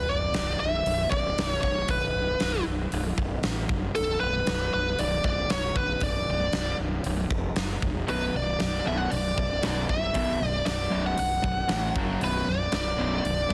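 A bluesy, distorted lead guitar with analog delay carries the melody up front in this heavy, driving hard rock excerpt in B minor at 116 BPM, over a growly fuzz bass, a huge arena drum kit with a punchy kick and fat snare that enters at 0.3 seconds, and, from 8.1 seconds, a bright cranked stack guitar and a dark semi-hollow guitar riffing in the background, all with a light room ambience and a heavily compressed radio sound.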